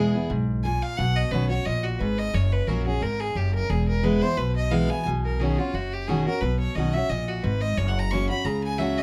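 A clear, earthy bowed fiddle carries the melody over a full-bodied picked steel-string acoustic guitar and a woody, growly pizzicato upright bass, all three starting together in this brisk, virtuosic bluegrass cut at 177 BPM in B major, with a light swing on the eighths. The fiddle sings with light vibrato while the jumbo guitar's fresh strings ring out with audible finger squeak, and the thumpy bass sits up front beneath a chord cycle of E, Badd9 and F#. Close, detailed microphones and light reverb give the rustic playing an intimate, present sound.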